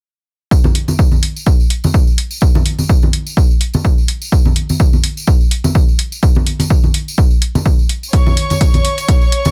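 This excerpt opens at 0.5 seconds with a punchy electronic kick drum, up front and tape-warm, alongside ringing, close acoustic tambourine and congas. An electronic hi-hat joins at 0.8 seconds, its analog tone re-recorded in a small room and sitting forward in the mix. It's soulful, energetic piano house at 126 BPM in 4/4, with a light swing on the sixteenths that gives the groove a loose, human push. Near the end, at 8.1 seconds, a rich chamber string section arrives with bowed sustained chords from Db5 to Db6, earthy and close with light vibrato, pumping against the sidechain. The kick drops out at 9.2 seconds, and the strings, hi-hat and hand percussion carry on in a snug small-room ambience as the fragment breaks off.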